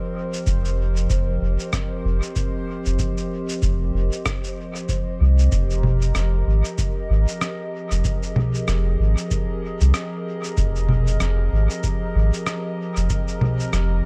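Meditative and spacious, this ambient dub excerpt moves at 95 BPM in F minor with a 16th-note swing, its echo-heavy mix shifting at 5.5 seconds from an Eb6/F chord to Fm7. A warbling, nostalgic pad with detuned, ring-modulated tones and chorus holds sustained chords throughout, while a bright, resonant stepped-filter texture bubbles in the background and a round, soft sub bass sits up front from 0.5 seconds. Muffled, pitched-down shaker, rim click and congas soaked in dub echo are soon joined by a deep analog kick drum that carries a large-room character.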